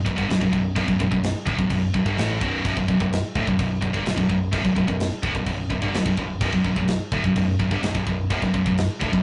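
A scooped, high-gain electric guitar, double-tracked and up front, opens this epic, aggressive heavy metal fragment in B minor at 127 BPM, grinding out a distorted, picked riff over a single Bm chord, with a growling overdriven fingered bass punching beneath it. A tight acoustic drum kit joins at 0.1 seconds, its crash cymbal glittering over a medium-tuned snare and tight kick. Light reverb and a rough rehearsal-room sound with a dull top end frame the roughly nine-second clip, cut from a longer piece.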